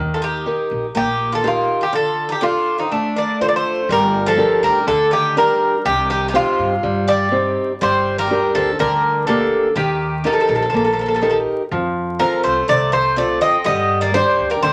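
Bathed in a wet club reverb and dusted with vinyl crackle, this dramatic, intense Greek folk piece, cut from a longer performance, features an up-front lead bouzouki with metallic, octave-doubled double strings. A brighter second bouzouki picks a lower line beneath it, while a boxy, fresh-stringed parlour guitar fingerpicks close up front. A growly, thumpy pizzicato upright bass adds a woody low end as the harmony moves from Eb and Dm into a longer passage from 3.9 seconds that turns through Gm, Cm, Eb and F before landing on G5.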